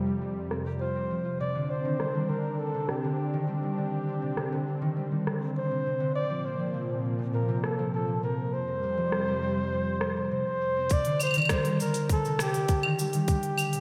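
A dark, close-miked flugelhorn opens this short folktronica excerpt alongside a ringing, fingerpicked concert harp and a smooth, detuned analog pad, setting an intimate, autumnal mood at an unhurried, straight pulse. The flugelhorn carries the solo melody in a jazz style, its vibrato and scooped notes trailing into a diffuse ambient delay, while the filtered harp arpeggios sit up front beneath it. The vintage sawtooth pad holds slow-attack chords with a warbling chorus, moving through Fsus2, Cmadd9 and Bbsus2 before it stops at 10.9 seconds. An organic electronic kit of cabasa, claves, crisp hats and rim click plays underneath, overdriven and muffled by low-pass filtering. At 10.9 seconds a tight, overdriven electronic kick comes in up front as the harmony returns to Cmadd9, and the dreamy mix is soaked in a lush hall reverb.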